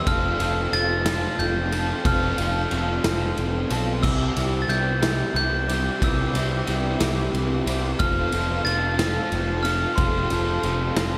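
Jangly and upbeat, this short indie rock passage moves in a lilting 6/8 over a simple F to C and back to F progression. A metallic, bell-like glockenspiel struck with hard plastic mallets carries the melody up high, ringing and airy above the band. Two guitars share the riff in the background: a crunchy overdriven one, bright and picked, dressed in lush chorus with slapback and tape echo, and another through a small old amp, slightly broken-up, lo-fi and compressed, with ensemble chorus and slapback echo. Up front, a fuzz-soaked picked electric bass sits alongside a raw garage drum kit whose boomy kick, medium-tuned snare, crash and ride ring out in a pumping stone room, gritty and saturated with a rolled-off top. Quietly behind it all, a very quiet string machine voicing violins holds shimmering, vintage sawtooth chords with a soft attack, and light reverb adds a touch of studio ambience.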